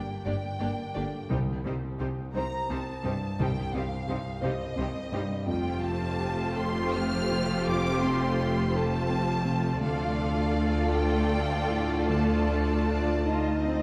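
A warm, dark production sits inside a wet concert hall, giving this short cinematic cut from a longer piece a tender, hopeful glow. A vintage-toned concert grand piano plays the accompaniment from the start, its intimate sound carrying audible action noise and deep bass. Above it, a focused studio violin section sings the melody high up with vibrato. From 0.3 seconds the symphonic strings join: a lush second violin line with soft attack, an intense viola section in the middle, a cello section in the background and a distant, even double bass section anchoring the low end. The pace is slow and rubato in 6/8, moving through Gm, Cm, Fadd9 and Dm. At 12.9 seconds a very quiet, roomy clarinet adds a second line, and a mellow French horn section enters alongside it with sustained chords.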